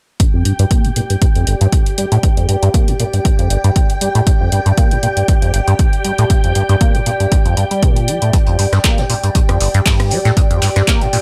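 A small room ambience frames this trippy, hypnotic acid house cut, taken from a longer piece, moving at 118 BPM in G minor with a 16th-note swing. A squelchy, resonant sawtooth acid bass sits up front with a filter sweep, 12-bit sampler grit, tube saturation and delay, over a punchy, dry electronic kick and an overdriven analog drum machine with metallic hats, handclaps and rim clicks. A lush string machine holds sustained chords from 0.2 seconds, a warbling, lo-fi tape-like pad with phaser joins at 1.0 seconds, and both share the sidechain pumping heard on the bass, while a dry acoustic soul kit with a rolled-off top adds hi-hat and snare in the background from 8.3 seconds.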